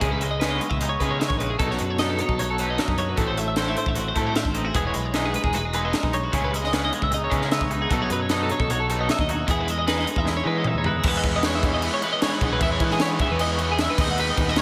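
A straight 4/4 pulse at 153 BPM drives this wistful, intricate math rock and midwest emo excerpt in E major. A crisp, up-front fusion drum kit with a high-tuned snare, tight kick and pumping room sound plays alongside bright, compressed twelve-string electric guitar arpeggios soaked in lush chorus and analog delay. Around them sit a raw, double-tracked garage guitar riff with overdrive and slapback echo, a growly picked electric bass, and a twangy clean electric guitar with tremolo, all moving over a progression of C#m9, B9, Am6 and Emaj9. A drum fill at 10.3 s leads into a new section at 11.0 s, where the twangy guitar drops out, and the whole mix carries a hall-reverb glow and a big arena sound.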